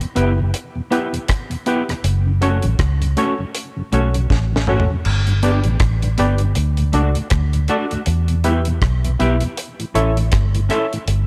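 This is an 11-second excerpt of laid-back, serious roots reggae at 80 BPM in 4/4, with a gentle sixteenth-note swing in E dorian. It opens with a mellow, round tonewheel organ sitting in the background, colored by chorus vibrato, a slow rotary speaker and dub echo, alongside a deep, dry reggae drum kit with a high-tuned snare, tight kick and rolled-off top, placed up front with rim clicks, hi-hat, toms and crash. At 0.2 seconds a dark, foam-muted fingered electric bass arrives, round and punchy and the most prominent part. With it come a clean, dark fingered electric guitar, thickened by ensemble chorus and dub echo, and a barky, reedy electric piano playing bright stabs with light overdrive and fast tremolo. A drum fill from 4.3 to 5.1 seconds leads from the opening Em and F#m into a second section that moves through G, D, Em and A, all set in a noticeable studio ambience.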